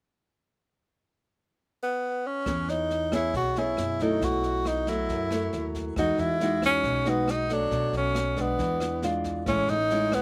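A relaxed, straight 4/4 bossa nova groove in E major at 137 BPM: in this sunny excerpt a clear, close-miked tenor saxophone enters at 1.8 seconds playing alone, its jazz-style melody sitting up front with soft attacks, vibrato and scooped notes. At 2.5 seconds a small, fingerpicked nylon-string guitar with slapback echo joins, together with a woody pizzicato upright bass and a brushed drum kit with a punchy kick, rim click and snare, as the harmony moves from E6 through Emaj9 and E7b9 to Amaj7. The outdoor sound is dry, with little reverb, and the saxophone stands loudest in the mix.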